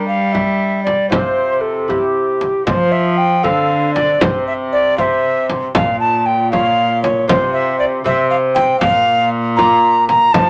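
An alto recorder leads this short cut from a longer renaissance-style consort dance, carrying the melody with a pure, woody tone, vibrato and soft attacks, placed up front with lifted highs. From the very start a fingerpicked lute supplies a delicate accompaniment on double strings, some of them octave-doubled, while a single bowed cello holds the bass with a rich, nasal, reedy gut-string tone in period style, set somewhat distant. At 0.3 seconds a large frame drum joins, deep and close, struck with hard hands in a dry sound. The dance moves in a lilting six-eight with a stately yet festive character, and its opening phrase is stated briefly before beginning again at 2.7 seconds. The harmony circles through suspended and resolved C chords, touching a darker B-flat minor before settling on B-flat, all within a moderate studio reverb.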